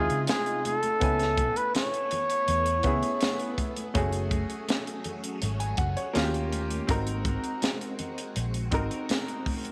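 A close-miked flugelhorn leads with a jazz-style solo of scooped notes, then stops at 3.5 seconds, while a clear, slightly worn grand piano with short sustain and a round, dark, foam-muted electric bass carry on through the rest of this smooth, romantic fragment of lush 1970s-style soul at 82 BPM. A tight funk kit with a high-tuned snare sits up front, while a swirling sawtooth string machine with ensemble chorus and phaser holds chords in the background, joined by soft-handed congas and a very quiet jingly tambourine. The harmony moves through Dbmaj9, Amaj9/C#, Gbmadd9, Eb7 and Ab7, all in light reverb and small room ambience.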